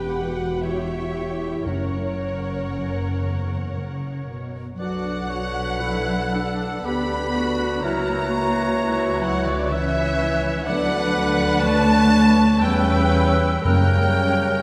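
Classical orchestral music in a yearning, elegiac rubato triple time, cut from a longer piece, in which expressive violins sing the melody over a smooth second violin line, lush violas, double basses with portamento and woody cellos, while dark French horns hold sustained chords in the background and hard-mallet timpani strike at 1.7 s, before a mellow, distant cor anglais, pure flutes, a clarinet and a clear bassoon join at 4.8 s, set in a wet scoring-stage reverb.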